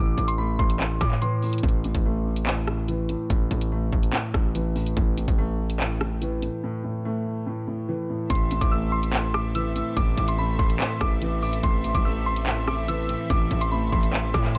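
Dry and echo-heavy, this cold, menacing drill excerpt sits in A minor at 144 BPM with a half-time feel, tuned slightly sharp to A4 = 445 Hz. A dark, mellow concert grand piano carries the low accompaniment throughout, trailed by dub echo, while a distorted, saturated 808-style bass pushes up front with heavy, aggressive weight. The electronic drill kit enters at 0.2 seconds with a knocking kick, bright hi-hats, handclaps and rim clicks, placed forward in the mix. A glassy, crystalline FM synth bell carries the high melody, warbling through chorus, tremolo and dub echo; it drops out after 1.4 seconds, leaving a long break for the piano, bass and drums. At 8.3 seconds the bell returns and a warm symphonic string section joins with smooth, bowed sustained chords and light vibrato, sitting low in the mix beneath the rest.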